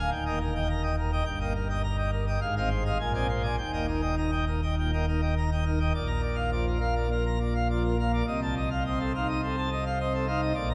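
Brilliant and majestic, this brief classical organ toccata excerpt features a solo pipe organ on full plenum with mixtures, its bright romantic voicing placed up front and spanning from deep bass notes to high treble, while a long, wet church reverb fills the space as the harmony moves from Eb through Fm7/Ab and Bb9 before shifting to Bb at 6.0 seconds and then to F7/C.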